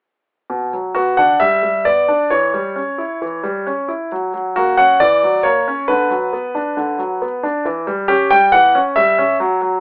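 A solo baby grand piano enters at 0.5 seconds with a B minor chord, opening this serious, dramatic classical-period sonatina in 4/4 at 135 BPM, played with a rubato feel. The piano sounds clear and intimate, placed up front, with audible action noise and a long, natural sustain. Its range spans B2 to G5 as the harmony moves from B minor through G and C#dim/E to F# at 4.1 seconds, then F#7/E, Bm/D and back to C#dim/E. Light reverb surrounds the instrument, while the whole recording carries a telephone-like sound. The passage is cut from a longer piece and closes at 9.8 seconds.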